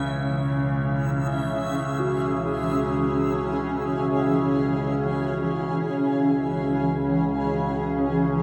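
Floating in free time, this ominous, vast dark ambient drone, cut from a longer piece, pairs an up-front overtone-sweeping drone of moving, resonant overtones and chorus with a cloudy, blurred, full-bodied granular pad holding sustained chords, while a pure, ringing quartz singing bowl with slow beating and tape echo plays meditative arpeggios in the background and a reversed, bright backwards swelling texture with lush chorus drifts through until 5.5 seconds, the whole mix soaked in a dreamy plate reverb.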